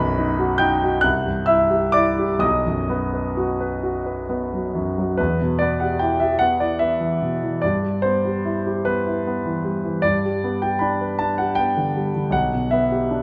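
A present, polished grand piano plays alone at the front of a moderate recital hall reverb in this mournful, yearning romantic nocturne in E minor, drifting with rubato through a slow 6/8 at about 42-53 BPM and spanning B1 to G6, its opening harmonies circling B and C before settling on E minor at 5.2 s and turning toward G at 10.0 s, in a short passage cut from a longer piece.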